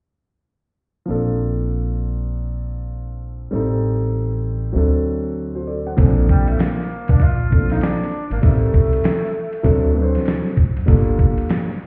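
Jazz-hop at 98 BPM in Bb major, cool and warm in mood, with a swung 16th-note feel: this fragment of a longer piece opens at 1.1 seconds with a dark, intimate concert grand piano, its action noise audible, over a woody pizzicato upright bass on steel strings. At 6.0 seconds a dusty, gritty sampler-style drum kit arrives up front with a thumpy kick, fat snare, hi-hat and ride, and at 6.3 seconds a breathy, whispered tenor saxophone takes a distant, roomy solo using subtone, vibrato and scooped notes. The whole mix sounds muffled, as if heard through a wall, with stone room reverb colouring it.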